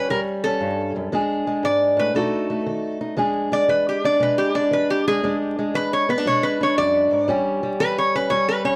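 A lap resonator guitar carries the melody up front with a warm, metallic, nasal slide tone, played with fingerpicks and set in plate reverb and analog delay, taking a steel-bar solo from 3.2 s to 8.8 s. Alongside it, an old ladder-braced acoustic guitar, also up front, is fingerpicked with a dark, woody, boxy tone from its old strings, moving through A7, E7 and B7 chords in E mixolydian. This rollicking yet laid-back acoustic country blues excerpt swings at 117 BPM in 4/4, with a wet studio reverb and a layer of vinyl crackle.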